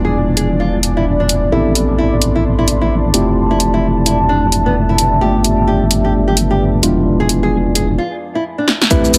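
UK garage in a swung two-step groove, soulful and moody: a small fingerpicked nylon-string guitar melody and mellow, clean tine electric piano stabs, both trailing dub echo, sit over an airy, breathy pad in the background, a deep, dark, warbling ambient pad with a vintage cast, and an up-front, detuned wobble bass, with both pads carrying chorus and sidechain pumping. A punchy, overdriven analog drum machine with hi-hat, shaker and snare comes in at 0.4 seconds, and the whole echo-heavy mix is bathed in wet spring reverb. The bass and airy pad drop out at 8.0 seconds for a brief break and drum fill, and a tight, layered electronic kick then leads into an electronic impact at 9.0 seconds as this excerpt closes.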